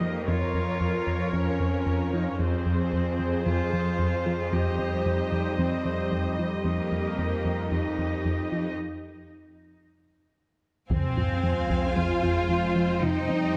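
Cinematic hybrid orchestral and electronic film score in F minor at 113 BPM, futuristic and relentless, where a distant, smooth solo cello with digital delay carries the melody over intense bowed violas, a lush cello section, a punchy, funky analog bass riff and a shimmering, retro pulse-width pad until a break at 8.8 s, then at 10.9 s an impact brings hard-stick taiko, a sub drop, background violin sections, a rich double bass section and a very quiet, warbling lo-fi pluck playing arpeggios, all set in a moderate scoring-stage reverb.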